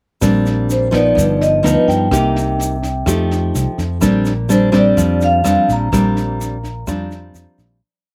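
Bossa nova at 126 BPM in Bb major with a sunny, sophisticated mood, built on an up-front fingerpicked nylon-string guitar playing thumb bass and syncopated plucked chords, a round, amped fingered electric bass on dotted root-and-fifth lines, a dark, smooth cocktail drum kit with a punchy kick, high-tuned snare and rim clicks in a brush groove, and a grainy tube shaker, while a ringing, metallic vibraphone with slow motor vibrato enters at 0.7 seconds with hook-like motif phrases over a Bb6/9, G7b13, Cm7, F9 progression, all captured dry in open air before a fade-out from 5.9 seconds.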